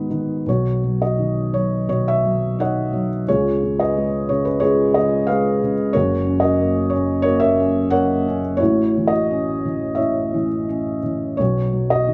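Close, detailed microphones catch a felt-muted upright piano, dark and intimate with thick felt softening every note, playing a brooding, cool lyrical classical solo with rubato and uneven beats across a range from F#1 to F#5, moving through chords from Badd9 to C#7, F#, A6 and back to Badd9 in a moderate recital hall reverb over this 12.1-second cut from a longer piece.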